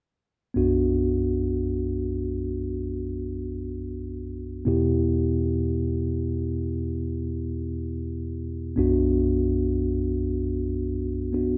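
A mellow tine electric piano opens this heartbroken pop fragment at 0.5 seconds and carries it alone, its clean, up-front tone moving from Bm to Em and back to Bm across a span from B1 to G4. A moderate scoring-stage reverb adds a soft halo, while the dark production rounds off the highs and gives the emotional moment an intimate, direct feel. It stops at 11.6 seconds, cut from a longer piece.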